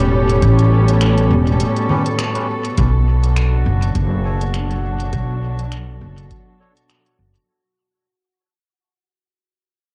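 Ambient dub with a meditative, hazy mood and a loose, lightly swung groove, cut from a longer piece and captured as a home cassette recording in a small, lightly reverberant room. Up front, a woody, pizzicato upright bass with transformer saturation anchors the low end. Beside it, a muted, con sordino string section holds veiled, bowed chords with vibrato and a lush, distant ensemble sound. A deep analog electronic kick and an organic electronic kit of congas, finger snaps and crisp hi-hats carry the rhythm, the kit treated with dub echo and re-recorded in a large room. In the background, a clear, classical-style clarinet plays a brief solo melody through analog delay, while a vintage, band-limited vibraphone with soft mallets and slow motor vibrato rings out metallic arpeggios, and a very quiet, reedy, breathy melodica adds nasal stabs. A break arrives at 1.6 seconds with a band accent shortly after, and as the music fades out from 2.8 seconds over a shift from A7 to Bm7, a calm, glassy texture of drifting sine overtones enters at 3.1 seconds, shimmering with chorus and its own reverb.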